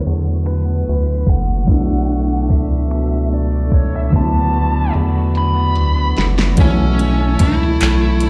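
A knocking kick, fat snare, metallic hats, finger snaps and handclaps open this late-night, yearning slow six-eight R&B excerpt together with a worn, slightly out-of-tune electric piano with light overdrive and a twangy chorused guitar at the edge of break-up in the background. A rubbery, nasal square bass joins almost at once, followed by a dark overdriven lead guitar carrying the melody from 0.5 seconds and thick, romantic pipe organ foundations from 1.7 seconds. Everything sounds as if played through a big sound system in a bare room with large reverb, under a low-pass filter sweep that runs until 6.6 seconds, where a drum fill begun at 5.4 seconds leads into the next section.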